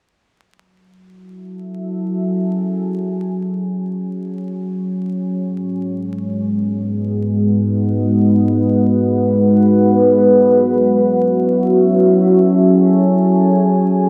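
Spacious and meditative, this ambient excerpt drifts in free time in F# dorian, cut from a longer piece. A single deep, dark ambient pad carries everything, entering at 1.3 seconds and holding sustained chords until 14.1 seconds, its mellow, moody tone built from detuned sawtooth unison layers over a sine sub octave. Slow attacks and long releases let the pad evolve gently, while chorus and its own reverb add a shimmering haze, and it sits up front in the mix. The harmony moves from F#m9 to G#m7 at 5.2 seconds and returns to F#m9 at 10.1 seconds. A wet echo chamber with a 2.1-second decay surrounds the sound, and the dark, warm production carries a vinyl crackle.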